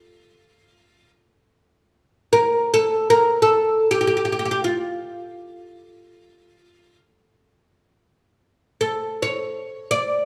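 A bright, woody fretless oud, plectrum-plucked on double strings and placed up front, plays alone in free time across this soulful, melancholic Arabic maqam excerpt of 10.2 seconds, moving between F4 and D5 in a tuning of A4 = 441 Hz, with a moderate recital hall reverb over small room ambience.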